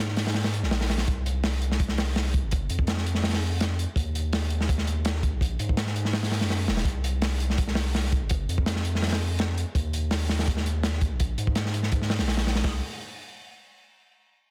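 A dark, nostalgic drum and bass cut with a jungle edge, this excerpt from a longer piece runs at 166 BPM in a straight 4/4 and sits in C minor. It opens directly on a drop that holds from the start to 12.6 seconds, with a deep, thick sub bass ranging from Eb1 to Ab2, its sine tone roughened by tube saturation and shaped with a fast attack and sustained notes. A crunchy breakbeat kit enters at 0.1 seconds and sits up front, built from hi-hat, kick, snare and splash cymbal, with a tight kick, a medium-tuned snare and dark cymbals. The kit has an acoustic, studio-room character that is mid-forward and gritty, with a rolled-off top end. The sound is dry, with little reverb, and the dense, heavily limited modern master presses everything into a compact, loud frame before a brief closing section after 12.6 seconds.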